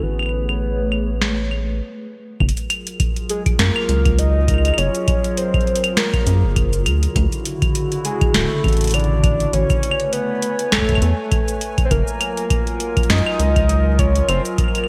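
A rubbery, hollow square bass sits up front through this wistful, intricate IDM excerpt at 101 BPM with a light swing, moving over lush major-ninth chords built around Amaj9, F#maj9 and Dmaj9. A warbling, nostalgic lead carries the melody with chorus, vibrato and digital delay, over a detuned, lo-fi pad of sustained chords bathed in its own reverb. A booming analog drum machine brings a crisp snare, metallic hats, claves and shaker under low-pass filtering and gated reverb, and after a brief stop at 1.8 seconds a deep, tape-warm electronic kick enters at 2.4 seconds, all set in a bright 1980s-style digital hall.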